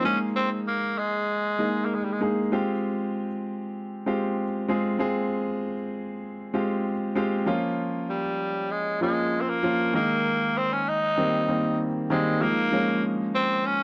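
A breathy, raspy tenor saxophone with slapback echo opens alongside a polished baby grand piano in this urgent, nostalgic pop fragment in straight 4/4, the sax dropping out at 2.2 seconds while the piano carries on through suspended and minor chords. The saxophone returns at 8.1 seconds, gritty and punchy up front, and holds through the close, where a suspended seventh chord arrives at 12.4 seconds. The dry, close sound of a small room lends it the feel of a 1970s studio.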